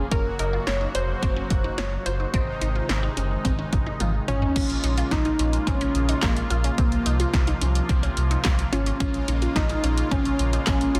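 This synth-pop excerpt opens with its synths and sub bass, and at 0.1 seconds a punchy analog drum machine enters up front, its kick and snare hitting hard with a tape-warm edge and a short room on the snare, clap and hats, alongside crash cymbal and toms. The mood is nocturnal and melancholic, moving at 108 BPM in a straight 4/4 in Bb minor. A deep, full sub bass with an octave layer holds the low end up front, while a funky polysynth comp carries the melody with dark, sawtooth-and-square plucks dressed in chorus and digital delay. Beneath it, a brassy, nasal analog pad sustains chords with a filter sweep and vibrato, and a juicy, squelchy blip pluck plays resonant arpeggios in the background through a phaser and delay. The harmony moves from Gb to Ab before a drum fill at 4.0 seconds leads into a section cycling Bbm7, Fsus4/C and back to Bbm7 from 4.6 seconds. Light reverb and digital ambience surround a dense, heavily limited modern master.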